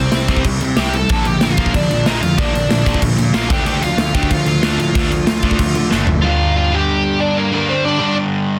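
Punk rock at 186 BPM in G minor, aggressive and angry, with a picked, up-front lead guitar carrying the melody over two bright background riff guitars, a growly fuzz bass and a punchy, big-room drum kit with bright cymbals, until a drum fill at 5.9 seconds gives way at 6.2 seconds to a closing stretch where only the lead and the crunchy riff guitar ring on through a dense, heavily limited master.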